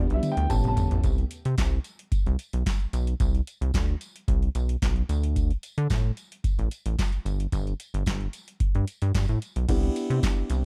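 Slick and late-night, this early-eighties boogie funk excerpt moves in a straight 4/4 with a dark, warm, dry production. It opens with a brief grand piano solo over a drum fill, the piano mellow with a boxy edge, while a lush vintage string machine holds sustained chords with ensemble chorus in the background; both drop away at 1.0 seconds. Throughout, a rubbery, bouncy square-wave bass carries the groove up front with a resonant filter pluck. Beside it sits a booming analog drum machine with a deep kick, crisp snare, metallic hats, handclaps, toms and crash cymbal, with a short room on the snare, clap and hats. A jingly, compressed tambourine sits behind them. The harmony touches A9 and D5 between chordless stretches, and the piano returns at 9.7 seconds on a Cmaj7.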